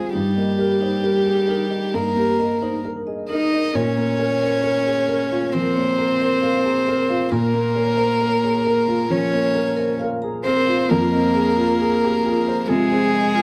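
Neoclassical piano and strings in a melancholic, longing mood, moving with a rubato feel in 4/4, cut from a longer piece and passing through Eb/G, Bbm and Fm chords. A single intimate violin carries the melody up front with light vibrato, an airy bow and a soft sul tasto tone, while a rich, pure cello floats at a distance on a second line and a woody, polished upright piano sits present in accompaniment. Behind them a metallic, ringing vibraphone with medium hard mallets and fast motor vibrato traces arpeggios, all four playing throughout, in a dark production with moderate studio reverb.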